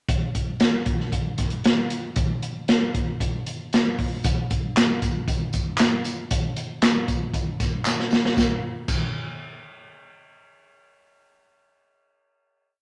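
A swinging big-band drum kit leads this short, danceable soul piece, sitting up front with a dark, smooth tone, a punchy kick and a medium-tuned snare whose top end is rolled off. From 0.1 seconds it drives a backbeat soul groove at 116 BPM in a straight 4/4, with crash cymbal and hi-hat rounding out the big-room sound. At 4.2 seconds a quieter percussion layer joins, bringing tambourine, egg shaker and group handclaps on the backbeat with a live-room feel. A drum fill at 7.9 seconds leads into a final hit at 8.4 seconds. Moderate studio reverb gives the whole groove a warm, cohesive space.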